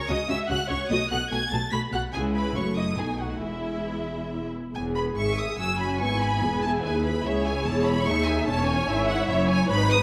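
Up front and close, the first violins carry the melody with an expressive, singing vibrato and gliding portamento, at the head of a quick, graceful classical-period movement for string orchestra in three, played with a cheerful, flexible rubato. Behind them a second violin line sits more distant, its soft attack blending into a lush bed. The violas add a dark, woody accompaniment with a smooth top, while the cellos give a rich, focused bass voice. Underneath, the double basses hold an even, smooth foundation. A scoring-stage reverb lends the ensemble a generous, wet sense of space across this short cut from a longer piece, whose phrase begins again at 4.7 seconds.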